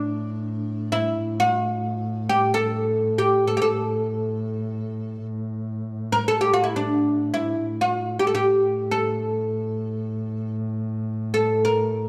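In free time, this brief, festive and passionate passage from a longer Turkish makam ensemble piece unfolds in A makam hicaz, with the fretless oud carrying the melody between D4 and Bb4 in a woody, plectrum-plucked voice whose double strings ring deep and up front. Beneath it for the full 12.1 seconds, a single bowed, muted double bass holds a dark, veiled, nasal drone on A2 with soft attacks and vibrato. Close, detailed microphones capture both players inside a moderate recital hall reverb of 1.6 seconds.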